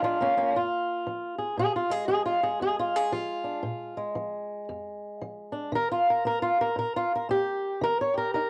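A lone fingerpicked acoustic guitar plays up front in a laid-back, soulful country blues, swinging its eighth notes at 115 BPM in Bb mixolydian and moving from Bb7 to Eb at 5.7 seconds. The instrument sounds dark, woody and boxy, with the character of old strings, reaching from low F2 up to Db5. This 8.5-second fragment of a longer piece carries the character of a home cassette recording, with a moderate studio reverb around the guitar.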